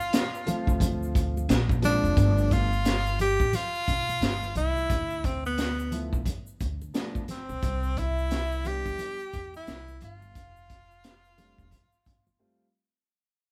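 Jazz-hop at 88 BPM in a swung 4/4, this nocturnal, mellow clip has a breathy, close-miked tenor saxophone carrying the melody up front with vibrato, over a gritty, saturated breakbeat kit with a punchy kick and high-tuned snare, and woody pizzicato upright bass. A dark, vintage baby grand piano supplies long-sustained accompaniment while egg shaker and congas sit dry in the background, and a very quiet, ringing vibraphone with soft mallets plays a second line that drops out at 1.4 seconds and returns at 7.3 seconds. The band sounds live in one room with light reverb, and the whole clip fades out from 2.2 seconds.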